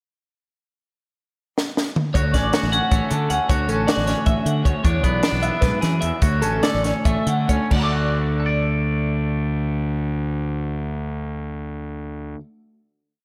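Set in a big arena-like space with a moderate scoring-stage reverb, this short, playful and intricate math rock and midwest emo piece in 7/8 opens with a fill on a dry, punchy compact cocktail drum kit with dark cymbals and a high-tuned snare, then an up-front, overdriven fuzz fingered bass plays a round, syncopated riff, a scooped, twangy electric guitar rolls through fingerstyle arpeggios with slapback echo, and a bright, compressed twelve-string electric guitar spins a phased, echoed ostinato over Dmaj7, E7 and Dmaj9 chords, the band slowing from 4.8 seconds until the drums stop at 7.8 seconds and the guitars and bass hold a final D chord.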